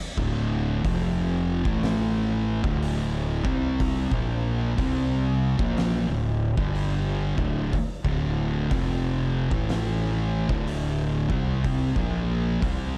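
A dark, warm small room frames this hypnotic, sludgy slice of stoner and doom metal, cut from a longer piece and moving with a heavy swung 4/4 feel. Two thick, picked fuzz guitars grind out the riff over Dm and A5 from 0.2 seconds, alongside an up-front, overdriven fingered electric bass. An oversized, low-tuned acoustic kit adds a punchy kick, a fat snare and hi-hat with a gritty, saturated edge.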